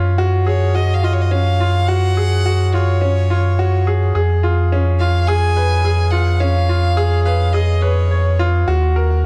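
Moving and melancholic, this short piano and strings electronica fragment at 106 BPM sets a bright, brilliant grand piano riff up front over a deep, round sine sub bass, while a single bowed violin enters at 0.5 s with a smooth, rich melody and vibrato, inside a dark production with light reverb and small room ambience as the chords move from Gbsus2 through Db7/F to Ebm.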